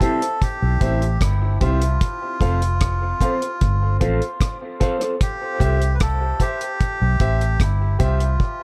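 This laid-back, hazy dub reggae fragment, cut from a longer piece, opens with a deep reggae drum kit, a melodica, a mellow electric guitar and a concert grand piano sounding together in C major at 75 BPM in a straight 4/4. The drums sit up front, dry and dark with a tight kick, rim clicks and hi-hat under a rolled-off top. A vintage muted fingered electric bass joins them at 0.6 seconds, round, amped and foam-muted, and also placed forward in the mix. Over this, the reedy, breathy melodica carries the melody with a nasal, airy edge, while the piano adds intimate stabs with audible action noise. The clean, fingered guitar accompanies through a phaser until it drops out at 5.2 seconds. The melodica, guitar and piano all trail dub echo in an echo-heavy mix set in light reverb and a small room ambience, as the harmony moves from C to F and back to C before a break at 8.4 seconds.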